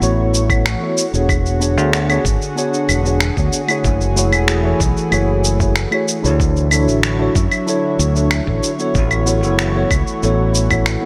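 Smooth and relaxed, this sunset chillout excerpt moves at an easy 94 BPM in a straight 4/4, drifting from E13 to Dmaj9 at 6.4 seconds and settling on A6 at 9.0 seconds. A tine electric piano supplies the accompaniment with a clean, warm tone heard through its built-in speakers, softened by a low-pass filter and trailed by delay. Beneath it, a lush unison pad holds sustained chords, its detuned sawtooth and square-wave layers made thick and warbling by chorus, with a slow attack and long release that give it a vintage, full-bodied glow. A bright fingered electric bass sits direct and up front in the low register. The percussion pairs a gritty, overdriven blend of electronic cabasa, claves and finger snaps, placed forward in the mix, with a thumpy, compressed electronic kick that enters at 0.5 seconds, both carrying a small room ambience. A light reverb lends the whole a gentle sense of space.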